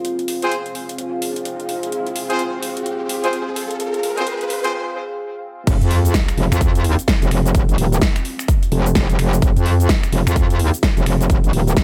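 Light digital ambience frames this bouncy, swaggering bass house clip in F minor at 128 BPM with a swung 16th feel, where a deep, moody sawtooth pad pumps under sidechain and a big-room drum kit with a huge snare and metallic hats plays throughout. Brilliant, close-miked horn stabs with vibrato and tape echo punch through the build-up while a riser and sub drop sit in the background, leading to a short break at 4.7 seconds. At 5.7 seconds the drop hits with a punchy, tape-warm kick and an aggressive, saturated FM wobble bass pushed up front.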